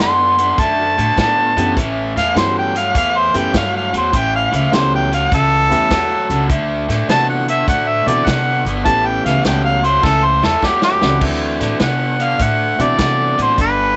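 A mellow harmonica leads this gritty, rollicking electric blues shuffle at 102 BPM in D mixolydian, soloing up front with light vibrato and scooped notes over a swung 4/4 groove. Beneath it, a raw garage guitar plays a bright, overdriven picked riff, a woody upright bass thumps out the low end on gut strings, and a vintage drum kit with a punchy kick and medium-tuned snare carries the rhythm on hi-hat, crash, kick and snare. An upright piano enters at 1.6 seconds with intimate, polished accompaniment, its long sustain touched by audible action noise. The harmony moves between D7 and A7, and a drum fill runs from 10.0 seconds to 11.2 seconds, where the harmonica solo ends and a new section begins. The whole sits in a small room with light reverb and softened highs, and the clip is cut from a longer performance.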